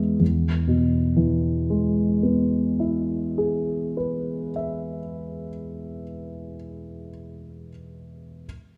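A dark, mellow concert grand piano sits up front, its deep bass notes ringing out over a span from E2 to E5 as it plays an accompanying part in this short classical fragment in a gentle, lilting compound metre. The playing breathes with a free, rubato feel, and the mood is tender and serene as it rests on an E major chord. A generous scoring-stage reverb with a two-second tail surrounds the piano, lending the brief passage, cut from a longer piece, a spacious, glowing halo.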